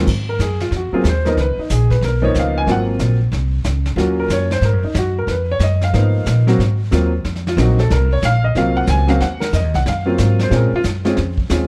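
Jazz piano trio swinging at a brisk 184 BPM in 4/4, this short excerpt from a longer piece has a sophisticated, dark character rooted in Ab mixolydian. A dark, mellow upright piano carries the melody as a solo from 0.1 seconds onward, its vintage, woody tone sitting up front across a range from F3 to Ab5. Beneath it, a pizzicato upright bass with gut strings gives a thumpy, up-front foundation between Ab1 and Bb2. A vintage brush drum kit, heard in a small room with dark cymbals, a medium-tuned snare and a punchy kick, keeps time with brushes across snare, hi-hat, crash and kick at a lower level than the other two parts. The harmony moves through rich extended chords such as Ab13, Db13 and Abm13/F before arriving at Bbm7 near 10.5 seconds, all captured in a dry, dark production with little reverb.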